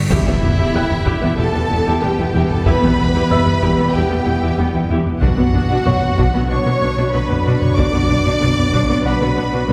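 Brooding and futuristic, this cinematic passage from a longer hybrid orchestral and electronic film score moves at 94 BPM in a straight 4/4, shifting from E minor to B minor at 5.2 seconds. A clear, intense violin section carries the melody high above a focused, smooth-topped second violin line, while a distant viola section and a mellow French horn section fill in the middle, with a very quiet cello section and bowed double basses supplying a lush low end. Underneath, a round analog bass plays a deep riff and a cloudy, evolving granular pad holds blurred, detuned chords very softly. Heavy-stick taiko drums sound close and dry, and a huge, bright cymbal swell and impact fills the opening until 2.7 seconds. A dark baby grand piano adds a delayed texture in the background, and the whole ensemble sits further back in a scoring stage with a 1.5-second reverb tail.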